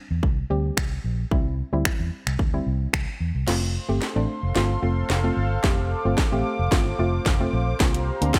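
A hollow, bouncy, detuned square pluck opens this carefree, summery dance-pop excerpt, quickly joined by a round, foam-muted electric bass, both pumping with sidechain, and then by a punchy, up-front house drum kit with cracking snare, finger snaps, hi-hat and crash that drives the groove, while an airy, bright, evolving pad with a filter swell and slow attack enters at 3.5 s alongside a drum fill and build-up that run to the end in a dry mix.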